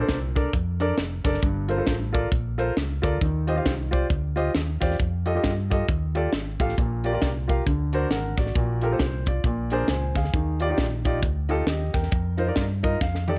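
A baby grand piano with a natural, short-sustained tone sits up front, comping through rich jazz-tinged gospel chords in Bb major such as Bbmaj9, Gm11 and Ebmaj9. A round, punchy fingered electric bass plays beneath it, and a tight funk kit joins at 0.1 seconds with a high-tuned snare, tight kick, hi-hat and toms. This hopeful, jubilant uptempo gospel excerpt moves at 135 BPM with a swung feel, in a small room with a dark, warm production; the piano adds a fill at 12.6 seconds and the drums follow with one at 13.0 seconds, as it lands on an F7sus4.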